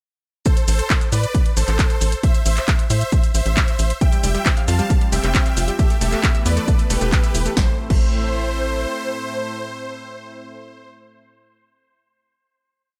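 Huge, detuned supersaw chords carry the melody of this short, bittersweet and driving uplifting trance piece, playing a bright repeating riff in thirds and sixths with sidechain pumping and dub echo until they ring out at 10.9 seconds. At 135 BPM in A minor, a punchy, tape-warm electronic kick sits up front in a four-on-the-floor pattern alongside an analog drum machine supplying shaker, claps, closed and open hats, snare backbeat and crash; both are re-recorded in a large room and stop at 8.0 seconds. A tight sawtooth and square-wave sequencer bass plays off-beat filter plucks underneath, mellow yet driving, with its own sidechain pumping. From 4.0 seconds a thick, warbling vintage pad with a slow attack and chorus adds sustained chords, while a round analog pluck runs an eight-step arpeggiated sequence with chorus and dub echo. The harmony moves from Am through Fsus2 and Esus4 before settling back on Am for a final chord, in a dry mix with little reverb.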